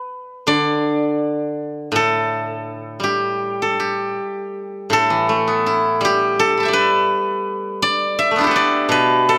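A solo steel-string zither, played with fingerpicks, sits up front with a silvery, ringing tone as it spans from A2 to B5 in this flowing, pastoral fragment of Chinese traditional music. The rubato phrasing moves loosely over a 2/4 metre, and a new section begins at 4.5 seconds before the clip ends at 9.4 seconds. A moderate recital-hall reverb surrounds the bright, acoustic sound.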